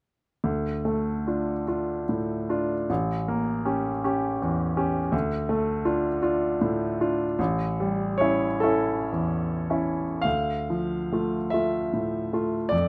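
Yearning and mournful, this romantic nocturne fragment, cut from a longer classical piece, features a lone grand piano with a smooth, vintage tone sitting up front in light reverb, its rubato 12/8 phrasing moving from Dm through A7b9, Dm and A7 before returning to Dm as a new section opens at 10.2 seconds.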